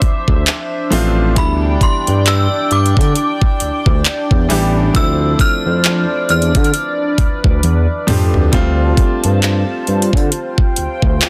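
A chiming, inharmonic FM synth melody rings high over a clear concert grand piano and a shimmering, detuned pulse-width pad that pumps against the kick, opening this longing, late-night contemporary R&B excerpt at 67 BPM in D dorian with a swung 16th feel. Up front, a smooth gliding synth bass with a nasal sawtooth tone, vibrato and portamento sits beside an electronic drum kit of knocking kick, metallic hi-hats, handclaps and toms. The chime, soaked in chorus, tremolo and delay, falls away at 8.0 s just after a drum fill starts at 7.6 s, as the chords move from Dm9 and Em7/D to G9sus4/D inside a dense, heavily limited modern master with digital ambience.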